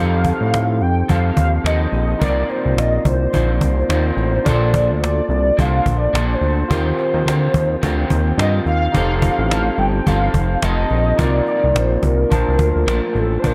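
A fat, detuned analog bass sits up front in this dreamy, laid-back bedroom-pop excerpt at 107 BPM in Bb major, its sawtooth and wave-folded tone shaped by a filter sweep, beside a close, dry, woody cajon with faint snares that enters at 0.2 s. A warbling, nostalgic lead carries the melody with a soft attack, ensemble chorus, vibrato and slapback echo. A slightly broken-up electric guitar through a small old amp adds picked accompaniment with subtle chorus and vibrato, and a bright, barky, lightly overdriven tine electric piano plays in the background, all over swung 16ths and chords moving through F7, Cm11, Bbmaj9 and Eb69 in light reverb, digital ambience and a dark, warm production.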